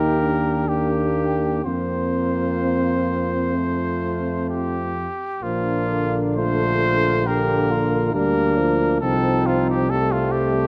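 A mellow trumpet with light vibrato and a soft attack carries the melody up front in this triumphant, noble brass quintet excerpt in Bb major, moving at a rubato 60-69 BPM in 4/4. A distant, roomy flugelhorn sings a second line in the background. A clear French horn and a vintage-toned euphonium with vibrato fill out the accompaniment over a tuba bass, and the harmony passes from Eb through Fsus4 and F before settling on Bb at 5.4 seconds. Close, detailed microphones and light reverb give the ensemble an intimate, polished sound.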